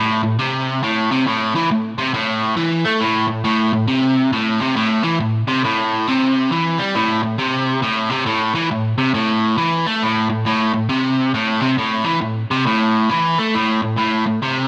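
A biting, overdriven electric guitar opens alone and carries this swaggering, raunchy rock passage from start to finish. The picked part sits in a low register between A2 and A3, played in 4/4 with a loose swing on the eighth notes that gives it a strutting gait. Double-tracked and placed up front, the guitar sounds thick and close, its grit balanced by a rounded, warm body. The same section is heard twice, with the second pass beginning at 7.0 s and running to 14.7 s. A light reverb and digital ambience lend a modest sense of space to this short cut from a longer piece.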